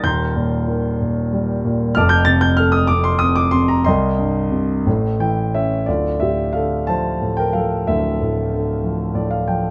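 A warm concert grand piano plays alone and up front in this wistful, reflective fragment of a lyrical classical piece, moving in a rubato 6/8 at 58-64 BPM through Eb6, F6, Cm, A7 and Dm9 harmonies, its deep bass and close, detailed sound set in light reverb, with brief fills at 4.9 and 8.8 seconds closing each of its two phrases.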